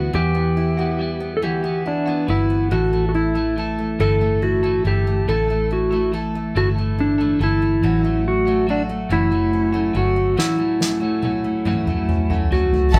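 Dramatic and aching, this six-eight pop ballad sets a dark, slide-played lap steel melody with volume swells up front over a jumbo picked acoustic guitar with finger squeak, compressed clean electric guitar arpeggios and a round, foam-muted vintage bass, captured as a band playing live in one room, before a soft-mallet drum kit with a fat snare and boomy kick enters with a fill at 10.4 seconds and a lush, woody string section touches in at 12.9 seconds.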